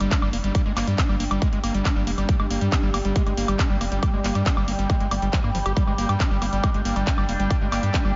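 Psychedelic and hypnotic, this 138 BPM psychedelic trance excerpt in G phrygian drives a punchy, up-front electronic kick and a techno kit of handclaps, hi-hat and woodblock under a squelchy, gritty acid bass riff with a resonant filter sweep and tape saturation, a round, deep analog bass, an overtone-sweeping ring-modulated drone of sustained chords, and a blurred granular cloud pad that drifts in at 0.7 seconds, the drone, acid bass and pad pumping against the kick in a dreamy mix soaked in huge reverb.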